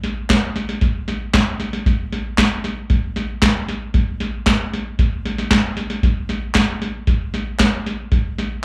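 Heard through a club's PA system with light reverb, this short folk excerpt has the slightly roomy feel of a live gig. At 115 BPM in a straight 4/4, the mood is bittersweet and yearning. A soft vintage rhythm box carries the beat from the start, its analog kick deep and its snare crisp, sitting up front with the character of having been re-recorded in a small room. From 0.3 seconds, a group handclap joins, human and acoustic but distant, as if caught in a large room, with a slapback echo trailing each clap. The claps sit well beneath the drum machine and drop out at 7.7 seconds, shortly before the rhythm box finishes.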